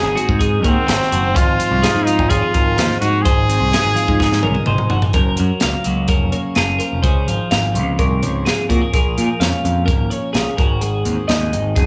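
A brilliant, up-front trumpet with light vibrato and scooped notes carries a playful, bright melody through delay over two twangy, clean twelve-string electric guitars, one providing picked accompaniment and one picking arpeggios through spring reverb and delay, while a growling overdriven picked bass and a crisp fusion drum kit with a punchy kick play along in this math rock and midwest emo excerpt at 127 BPM in Gb lydian, the trumpet falling silent at 4.9 seconds during a drum fill that leads into a new section at 5.1 seconds moving from Gbmaj7 through Dbmaj7 and Bbm7 back to Ab7.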